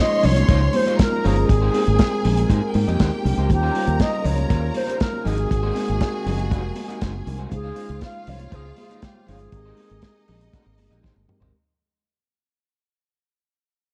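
Disco at 119 BPM in Ab major, celebratory and danceable, this short cut from a longer piece fades out across its whole length, with a dark production and a light studio reverb. A reedy, airy alto flute carries the melody from a distant spot, its soft attack and vibrato touched by a slapback echo, while a lush, focused string section plays a second line up to C6. Underneath, entering together at 0.2 seconds, a fingered electric bass and a muffled, lo-fi soul drum kit with a tight kick and a medium-tuned snare sit up front, alongside very quiet, ringing high-tuned congas. In the background, a mellow tine electric piano, a slightly broken-up electric guitar through a small old amp, and a close-miked French horn section holding sustained chords fill out the harmony. The chords move through Dbmaj9, Abmaj9, Eb13 and Ab9, and a drum fill at 11.0 seconds closes the passage.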